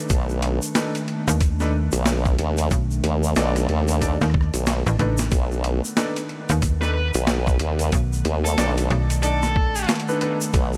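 A formant-sweep wobble bass anchors this funky, gritty glitch hop excerpt at 92 BPM with a swung 16th-note feel, its wobbling sawtooth-and-sine tone thickened by chorus and tube saturation up front, joined from 1.3 seconds by a snappy, metallic slap-like FM bass. A pitched-down, compressed sampler-style kit with a thumpy kick and high-tuned snare drives the groove with a drum fill at 5.0 seconds, while a grainy tube shaker, a nostalgic, detuned tape-like pad with sidechain pumping, and intimate grand piano stabs with audible action noise and tape echo fill out the B7#9 harmony. A dark, high-gain lead guitar enters at 6.8 seconds for a short distorted melody, all over light reverb and vinyl crackle.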